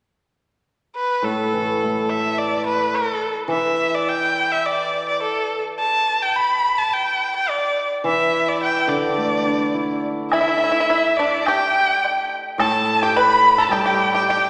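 A straight, even two-beat pulse carries this pastoral, festive passage for Chinese chamber ensemble, cut from a longer piece. A single bowed erhu takes the melody from 1.0 s, its tone clear and focused, sitting close and up front with vibrato and portamento. Beneath it, the hammered dulcimer supplies a shimmering, ringing accompaniment, pausing briefly before returning at 8.0 s. At 10.3 s the texture fills out. A large bamboo dizi adds a bright, reedy second line with a buzzing membrane, crisp chiff and vibrato, heard distant in the background, while a pipa played with fingerpicks offers a dry, percussive second line up front and a very quiet woodblock joins. A wet concert hall reverb with a long tail wraps the ensemble in spacious resonance.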